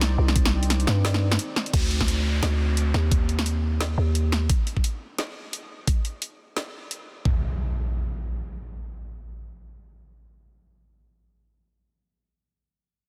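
Half-time drum and bass at 174 BPM with a cinematic, heavy mood, this excerpt opens on a drop where a deep, moody pad holds a Cmadd9 chord in the background with chorus, reverb and sidechain pumping until 1.7 s, while a growling, buzzy 808-style bass sits up front, an overdriven kit with a woody snare, bright hats and crashes is joined at 0.4 s by a knocking electronic kick, and electronic downlifter and impact effects arrive at 1.7 s and again at 7.3 s, all in a dense, heavily limited master with light digital ambience.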